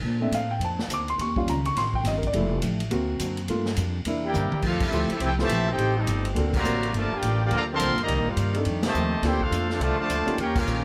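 A joyful, energetic big band swing groove at 209 BPM in 4/4 drives this excerpt in F major, with the upright bass up front in a woody, growly pizzicato and a distant, roomy drum kit with a punchy kick, medium-tuned snare, ride, hi-hat, crash and toms. The baby grand piano carries the opening as a soloist with a natural, short-sustained tone, while a picked steel-string acoustic guitar sits full-bodied in the background, its finger squeaks just audible. The horns arrive from 4.2 seconds, with a drum fill at 4.3: a bright, soft-attacked trombone section plays a second line, a clear, vintage-toned trumpet section takes the melody up front with vibrato, and from 4.6 seconds a very quiet, tight saxophone section holds sustained chords from afar. Band accents punctuate the second half, landing around 4.8, 6.5, 8.8 and 10.5 seconds. The harmony moves through rich extended chords such as Bbmaj9, D7b13 and F13, all set in a light reverb.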